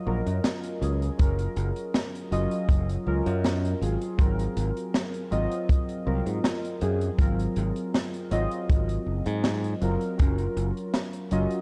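Warbly lo-fi synth keys open this dreamy, nostalgic vaporwave excerpt at 0.0 seconds, their mellow triangle and sawtooth tones striking quickly and then decaying under a subtle chorus and analog delay. A bright, growly fingered electric bass joins almost at once, sitting direct and up front in a low register. The open jazz kit brings in a high-tuned snare and hi-hat coated in vintage 12-bit sampler grit, and a boomy acoustic kick with the same grit arrives at 1.2 seconds as the most prominent drum. At a relaxed 80 BPM in straight 4/4, the harmony drifts from Gbmaj7 to Ab13 at 3.8 seconds before settling back on Gbmaj7. Light reverb and small-room ambience frame a dark, warm production.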